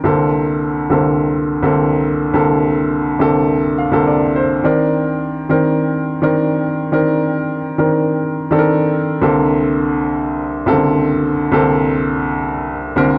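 A baby grand piano opens this short disco cut on a Bbmaj9/C chord, playing alone at a driving 105 BPM in a straight 4/4. The instrument sits up front with a natural, warm tone, ranging from deep C2 bass notes up to F5, and the mood is glamorous and propulsive. A piano fill arrives at 3.5 seconds and leads into a Cm9 harmony, before the Bbmaj9/C chord returns as a new section begins at 9.2 seconds. A moderate echo-chamber reverb gives the piano a lingering, roomy tail, and the overall production leans dark and warm. The tuning sits slightly sharp of standard at A4 = 445 Hz, and the passage is cut from a longer piece.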